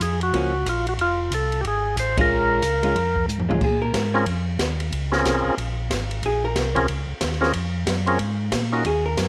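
Lightly reverberant studio sound frames this smoky, late-night soul jazz organ trio in Bb minor at 183 BPM with a swung 4/4 feel, where an up-front percussive tonewheel organ with key click and slow rotary speaker carries the melody, a round, mellow tonewheel organ with chorus vibrato holds the bass, an acoustic drum kit with boomy kick and high-tuned snare plays crash, hi-hat, ride and toms, and a dark, compressed, picked hollow-body electric guitar comps before taking a solo from 3.6 seconds after a band accent at 2.1 seconds and a drum fill.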